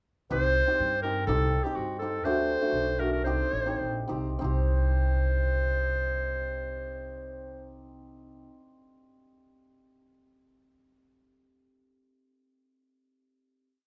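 Heard from further back in a small, moderately reverberant room, this brief, complete klezmer piece in 2/4 has a soulful, bittersweet mood. A clear, present clarinet plays an ornamented modal solo melody up front in a classical style, over shimmering, ringing triad chords from the hammered dulcimer and a woody, growly pizzicato upright bass playing a quarter-note figure. The harmony moves from Cm to D and back to Cm as the music slows from 2.3 seconds, then settles on a final chord held from 4.4 seconds until the clarinet drops away at 7.8 seconds.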